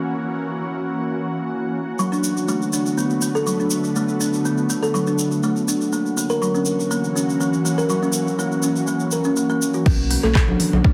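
A straight afro house groove takes shape in this hypnotic, warm clip cut from a longer track, opening on an ethereal, airy pad whose detuned sawtooth chords carry chorus, built-in reverb and sidechain pumping from 0.0 s. At 2.0 s a woody, hollow-boxed kalimba steps up front with ringing arpeggios through digital delay, joined by a grainy egg shaker. The harmony moves between F#7 and Bm7, and the pad's slow attack and long release keep the build suspended and mellow. The drop lands at 9.9 s with a deep, overdriven electronic kick leading the mix, a round sine sub bass, and an afro-pop kit of smooth hats, handclaps, rim click, toms and crash with tape-like warmth in a small room. High-tuned congas with thin skins and hard hands join briefly, and the whole mix sits in a light reverb.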